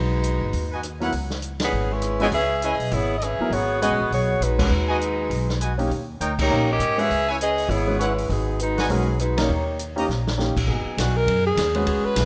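Brassy and sultry, this fast big band swing passage in G# minor runs at 201 BPM, with a mellow, vibrato-rich saxophone section carrying the melody over woody pizzicato upright bass, an open jazz drum kit with dark cymbals and a boomy kick, and a clear, intimate concert grand piano accompanying through G#m7, C#m7 and D#7 changes, all set in light reverb. A trumpet section with a smooth top adds stabs, and a drum fill at 10.1 seconds leads into a new section at 10.7 seconds. There, a veiled, bucket-muted trombone section holds dark chords beneath a breathy alto saxophone solo full of subtone and scooped notes.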